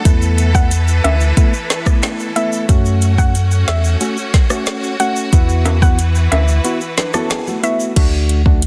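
A dense, heavily limited modern mix bathed in digital ambience carries this sultry, bouncy dancehall excerpt at 91 BPM in F# minor, where an electronic afro-pop kit with a deep kick, woody snare and metallic hats sits up front beside a round sine sub bass, while a hollow, wave-folded organ stab with chorus, a clear bowed string section pumping under sidechain, ringing egg shaker and timbales, and a soft pluck lead with chorus and digital delay move over Asus2, F#m and Esus2 before a fingerpicked nylon-string guitar arrives at 7.0 s during the break.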